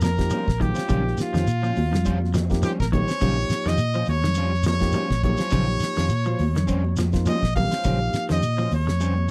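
A dry, close 1970s-style studio sound with little reverb frames this short afrobeat cut, a funky, hypnotic groove at 104 BPM in 4/4 with a light sixteenth-note swing, resting on a single Bbm69 chord in Bb dorian. An airy, damped 70s drum kit with a fat snare, tight kick and hi-hat anchors the beat, while a dark, round fingered electric bass sits prominently between Bb1 and Bb2. Bright, high-tuned congas played with soft hands sound distant, as if in a large room, and a grainy, mellow shekere adds close texture. Two electric guitars at the edge of break-up share the middle: one picks scooped, twangy arpeggios low in the background, and the other plays picked stabs through an analog chorus. A barky tine electric piano, clean through a combo amp, comps from 0.2 to 8.4 seconds. Over it all, a brilliant, forceful trumpet with light vibrato carries the solo melody from F4 to F5, punchy yet roomy in its placement.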